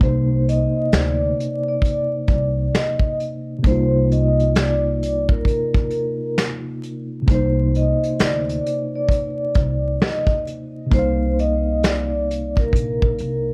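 A swung sixteenth-note groove in 4/4 comes from a soft brush drum kit, with finger snaps, hi-hat, a punchy kick and a medium-tuned snare, sitting up front in a small room. This melancholic, reflective lo-fi hip hop fragment, cut from a longer piece, rests on a single Cm9 chord for its 13.5 seconds. A woody, dark upright bass plays pizzicato low in its register, while a mellow tine electric piano, clean through its built-in speakers but run through cassette tape and a low-pass filter, fills in the accompaniment. On top, a vibraphone played with soft mallets carries a ringing, airy melody, its slow motor vibrato heard through a low-pass filter. The whole mix has light reverb and the character of worn, warbling old tape, with vinyl crackle and drifting pitch.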